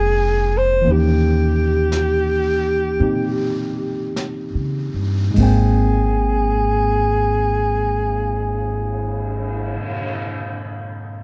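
Intimate and melancholic, this short jazz fragment, cut from a longer piece, drifts at a slow 49-59 BPM in 4/4 with a gentle swing on the eighth notes, settling in Ab major after a slowing opening phrase. A breathy alto saxophone carries the melody up front, its vibrato and scooped notes heard through a plate reverb that lends a distant, roomy air. Beneath it, a worn, slightly out-of-tune tine electric piano played through a combo amp supplies clean accompaniment and rings on until 11.2 s, after the saxophone and bass stop at 9.8 s and the drums at 10.1 s. The upright bass is plucked on gut strings, woody and thumpy, while a jazz brush drum kit enters at 0.9 s, sitting far back in a small room with dark cymbals, a boomy kick and brushed snare. The harmony moves from Bbm9 through Eb7b9 before resolving to Abmaj9 at 5.4 s, all wrapped in a dark, lightly reverberant production.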